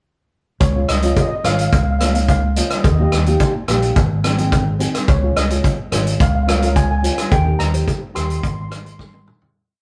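Calypso in a carefree, festive mood at 107 BPM in Db major, where a soft, shimmering steel pan played with rubber sticks floats a free-flowing lead over thumb-plucked, full-bodied nylon-string guitar chords, a growly, amped fingered bass figure and an up-front vintage drum kit with a punchy kick, a rolled-off top and calypso groove; the guitar adds a fill at 4.0 seconds, the piece begins fading at 7.3 seconds, and a drum fill closes it at 9.0 seconds, all in a rough rehearsal-room sound with moderate reverb.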